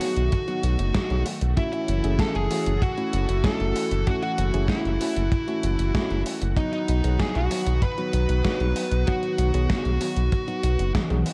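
Synthwave at 96 BPM with a nostalgic, nocturnal mood, where a fuzzy, compressed lead guitar carries the melody over a soft, warbling FM synth bell line, a silky detuned string pad with sidechain pumping, worn and slightly out-of-tune electric piano stabs, a deep, round analog bass up front, a punchy kick, and a gated 80s digital drum machine with a gated-reverb snare, moving from B to F#m7 and back before a drum fill at 10.9 s closes this short cut from a longer piece in a dark production.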